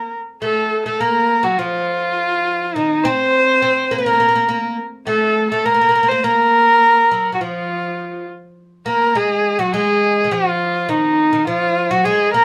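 Melancholic and hypnotic, this short cut from a longer Turkish makam ensemble piece moves at 103 BPM in a straight 4/4, tuned to A4 = 439 Hz. A single bowed kamancheh carries the melody up front from start to finish, its clear, focused tone with a smooth top shaped by vibrato and portamento. Beneath it, a fretless, plectrum-plucked acoustic oud with double strings plays a second line in a lower register, bright and woody but set well back in the mix. The music shifts into a new section at 8.6 seconds and runs on to 12.4 seconds. The band sounds live in one room with light reverb, and the recording carries some lossy compression artefacts.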